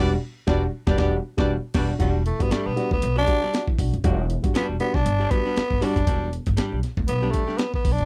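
This sly, hypnotic funk excerpt in E minor opens on an Em9 band accent, with a tight horn section, a clean hollow-body archtop guitar, boxy upright piano stabs and a woody, growly pizzicato upright bass, joined at 0.5 seconds by a gritty, compressed breakbeat kit with a thumpy kick. At 118 BPM with a lightly swung sixteenth-note feel, the horns drop out after 1.9 seconds, and from 2.3 seconds a raspy, growling tenor saxophone takes an up-front solo over the guitar, piano, bass and drums. The sound is dry and close, like a 1970s studio session.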